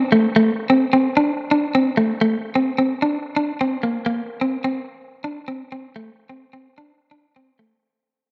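A clean, picked electric guitar plays alone up front in this short, joyful highlife excerpt, its compressed, warm tone set in spring reverb within a moderate studio room, in straight 4/4 before a fade-out that runs from 0.3 to 7.8 seconds.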